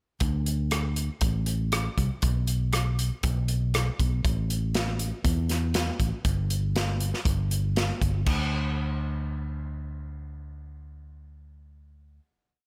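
A dark, round fingered electric bass sits up front in this short, nostalgic folk rock and heartland rock piece at 119 BPM, its punchy amped tone locked to the kick drum. A natural country drum kit with an airy, polished studio-room sound drives a straight rock groove with crash cymbal, hi-hat, rim click, a medium-tuned snare and a punchy kick through the jangly verse. The drums stop at 8.4 seconds, leaving the bass alone to sustain the final note until 12.2 seconds in a dry mix with little reverb.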